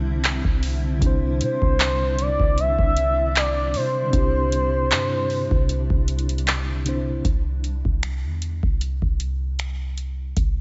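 Contemporary R&B at a tender, smooth 77 BPM in C major, where a mellow tine electric piano and a blurred granular cloud pad with built-in reverb and sidechain pumping hold a Cadd9 chord over a deep, boomy 808-style bass and a booming analog drum machine of finger snaps, handclaps, metallic hi-hat and kick, while an up-front gliding portamento lead with chorus and tape echo sings from 1.4 s, before the chords fall away at 7.2 s and only the bass and drums carry this cut from a longer piece to its close.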